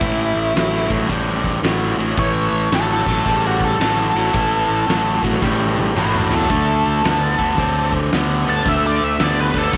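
Gritty and driving, this swung blues rock and southern rock power-trio cut features a dark, picked octave-fuzz lead guitar soloing over a bright, double-tracked fuzz guitar riff placed up front, a growly overdriven fingered bass and a huge arena drum kit with a fat snare and punchy kick that breaks into a fill from 5.4 to 6.5 seconds, all set in a moderate echo-chamber reverb.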